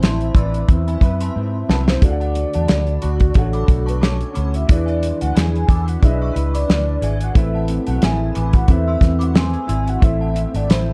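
A damped 70s drum kit sits up front in this nostalgic, hazy indie and bedroom pop excerpt, its fat snare and tight kick dry and rolled-off at the top, with a short fill at 1.4 seconds. At 90 BPM in 4/4 with a gentle swing on the 16ths, the groove is anchored by a foam-muted, round fingered electric bass that also sits up front. A velvety synth lead carries the melody through tremolo and subtle chorus, while an electric guitar through a small old amp adds slightly broken-up, compressed accompaniment with ensemble chorus and a vibrato effect. In the background, an inharmonic FM synth chime rings out with a long release through chorus and analog delay, and a woody, boxy upright piano with audible action noise joins at 2.0 seconds. The chords move from Amadd9 to Dmaj7 and E7 before returning to Amadd9, all set in light reverb within a dark, warm production.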